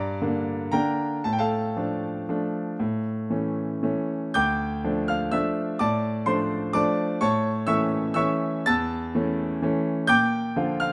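A rubato waltz in 3/4 sways between roughly 112 and 134 BPM, its pulse stretching and yielding. This short classical piano piece in D minor carries a wistful, bittersweet mood, cut from a longer work and lasting just under 11 seconds. A lone concert grand plays throughout, ranging from D2 up to A6, pairing deep bass with a brilliant, open treble, and its notes have a short sustain that keeps the texture clear. The harmony moves from G minor through D minor over A and A major, settles on D minor at 4.3 seconds, and turns toward B-flat at 10.1 seconds. Close, detailed microphones place the piano up front, with light reverb adding a touch of space.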